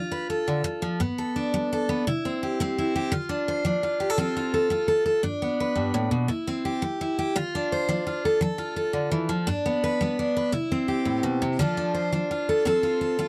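Set in 12/8 at 113 BPM, counted in dotted quarters with a straight feel, this short highlife passage is cut from a longer piece and has a joyful, carefree spirit in C major. A single picked steel-string acoustic guitar carries everything from 0.0 to 13.3 seconds, ranging from G2 up to C5. Its jumbo body gives a full-bodied, bright tone, with fresh strings and the occasional finger squeak sitting up front in the mix. The harmony opens on F and G before settling into a cycle of C, Dm, F and G that repeats from 2.1 seconds onward. The sound is dry and close, with little reverb, in the manner of a 1970s studio recording.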